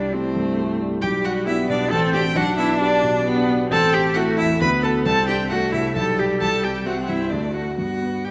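A moderate scoring-stage reverb frames this brief excerpt of a quick, cheerful classical-period movement for piano quartet in G major, moving at 134 BPM in a spirited 3/4. A solo violin carries the smooth, vibrato-laden melody in a high register, while a rich cello sings a second line alongside a focused, distant-sounding viola and a dark, mellow grand piano that sits up front with a vintage tone and long sustain. The harmony moves briskly through C, G/B and D7 colours before settling home on G at 7.8 seconds.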